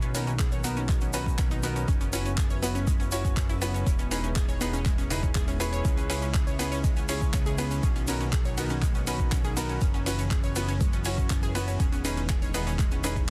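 This dense, heavily limited modern master sits in a digital ambience, giving a 13-second cut from a longer progressive house track an expansive, bittersweet glow at 121 BPM in a straight 4/4. A deep, overdriven electronic kick drum, re-recorded in a small room, sits up front from 0.4 seconds, joined by a layered deep house kit of handclaps, hi-hat and ride cymbal with its own overdrive and pumping sidechain on the hats and cymbals, while a grainy, band-limited egg shaker ticks in the background. Underneath, a fat analog bass built from detuned sawtooth and square waves gives a saturated, filter-plucked low end between E1 and C#2, breathing with sidechain pumping. A punchy unison pluck with a noise layer spins arpeggios through dub echo, and a brilliant baby grand piano adds stabs roughened by vintage 12-bit sampler grit and echo of its own. Behind them a warbling, full-bodied unison pad holds sustained chords with chorus and a slow attack, tracing Bmaj7, F#7sus4, Emaj7 and C#m7 before circling back to Bmaj7.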